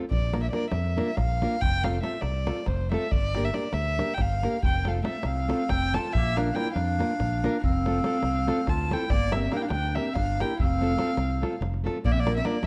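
Fingerpicked nylon-string guitar and a deep davul open this wild, festive Balkan wedding-band piece in F major, set in a brisk 7/8 at 281 BPM counted in eighths and speeding up throughout. The guitar's bright, fresh-stringed, full-bodied classical tone carries the accompaniment, complete with audible finger squeak, while the davul sits close yet in the background. From 0.1 seconds a dark violin takes the melody up front, played by one bowed player with light vibrato, a soft attack and an airy, intimate closeness. Beneath it a modern fingered electric bass adds a growly, punchy, direct low end over a cycle of Bb, F, Gm and F. At 5.2 seconds a clear clarinet joins with a classical-style second line that sounds distant and roomy. Light reverb and a dark, warm production round out this short section cut from a longer piece.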